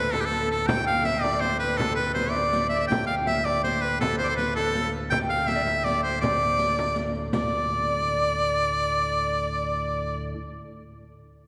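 An edgy, close-miked shawm carries the folk-style melody up front from the first moment, over an airy tenor recorder with vibrato and a chiff, a ringing fingerpicked Celtic harp, and a low drone from a chamber organ's sparkling flute stops, all in a mysterious, ancient medieval dance in D dorian at 109 BPM in 6/8. A small, dry frame drum played with soft hands and a distant riq with dark jingles join almost at once and drop out at 7.5 seconds. The harp keeps sounding alone until 11.0 seconds in the long, wet church reverb of this short section cut from a longer piece.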